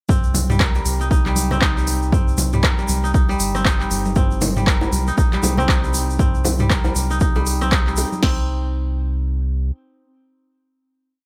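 A dry, punchy mix opens this short, hypnotic and spiritual afro house piece at 118 BPM in C minor, where a crisp, fingerpicked kora arpeggio with sidechain pumping and digital delay rings over a round, dark analog bass with long gliding notes, a four-on-the-floor deep house kit with smooth hats, claps, rim clicks and toms, ringing congas in the background, and a grainy shaker on a single Cm7 chord. Tight, distant bongos join at 4.2 seconds before the drums drop out around 8.2 seconds, and the kora and bass ring on, the bass fading by 9.7 seconds and the kora lasting to 10.0 seconds.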